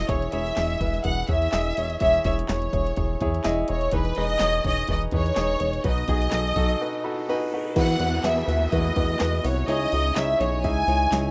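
A bright studio violin section carries the melody up front, its lush, bowed, focused ensemble tone shaped by vibrato, in this hopeful, anthemic piano-driven pop excerpt at 125 BPM in 4/4 with a light swing on the sixteenths. A clear grand piano supplies the accompaniment, intimate and polished with audible action noise, while a chorused synth bass adds a dark, glossy, retro pulse beneath. An electronic house drum kit enters at 0.1 seconds with a punchy kick and snare, bright hats, handclaps and crash cymbal. At 6.8 seconds a break arrives, filled by the piano while a riser and downlifter sit in the background, before the music moves into a new section at 7.8 seconds on an Esus2 chord. Light reverb frames a rough home demo mix.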